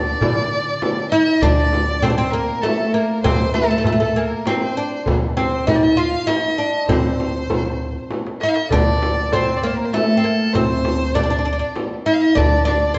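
A straight three-beat pulse carries this soulful, longing Arabic maqam ensemble piece, cut from a longer performance. Up front, a deep, woody oud with doubled strings carries the melody, plucked with a plectrum on its fretless neck. Above it, a single bowed violin adds a rich, focused second line with vibrato, while a pizzicato upright bass on gut strings gives a thumpy low foundation. The percussion pairs a very quiet clay darbuka with natural skin, struck with hard hands and heard close and dry, against a small, bright frame drum set distant in a large room, and a drum fill stands out at 8.1 seconds. The band plays live together in a wet stone room whose reverb lingers for about 1.4 seconds, with the highest frequencies held back.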